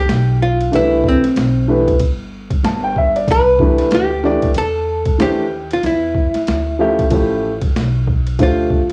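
A clean, hollow-body archtop guitar opens this relaxed, smooth jazz-hop excerpt, carrying the melody with a picked, dark electric tone, over a pizzicato upright bass whose gut strings sound woody and thumpy. A boom bap drum kit arrives almost at once, at 0.1 seconds, with a sampler-style, pitched-down, overdriven and gritty character: a thumpy kick, a high-tuned snare, hi-hat and ride cymbal, all compressed and placed up front. At 0.7 seconds a mellow, boxy upright piano joins as accompaniment and sits forward in the mix. The tempo is a laid-back 94 BPM in 4/4 with a swung sixteenth-note feel, in C major, and the harmony moves from Cmaj9 through Aadd11 and A7b13 before reaching Dm7. Cassette tape colouring on the guitar, piano and drums, together with light digital reverb and small-room ambience, gives the piece a homemade lo-fi intimacy.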